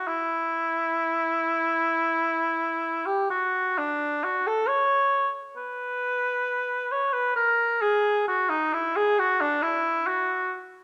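Flowing in a free, rubato 4/4, this mournful, yearning classical passage for unaccompanied cor anglais is cut from a longer piece. The solo cor anglais sings alone from 0.0 to 10.5 seconds, its tone warm with a light vibrato, sitting up front yet with a distant, roomy quality. A moderate scoring-stage reverb lets each phrase hang in the air, deepening the sense of longing.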